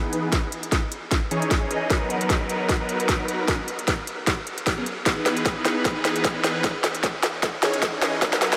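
Future bass at 152 BPM in 4/4, with a half-time feel and a light swing on the sixteenths, this emotional, bittersweet passage is cut from a longer piece and plays as one continuous build-up. Huge, lush supersaw chords carry the riff from the start, their detuned sawtooth unison sitting bright and up front, shaped by phaser, sidechain pumping and a low-pass filter that sweeps across the whole passage, with a diffuse ambient delay trailing behind. The harmony moves through C#madd9, Bmaj7, G#m11 and Emaj7 before returning to C#madd9 at 6.6 seconds. A trap kit with a sharp snare and crisp hats sits up front and runs a drum fill throughout, while an electronic kick with a hard-clipped, tape-tinged punch enters at 0.3 seconds and stops at 8.3 seconds. A vast ambient reverb with a 4.8-second tail soaks the high-passed mix, giving it a dreamy, suspended sense of space.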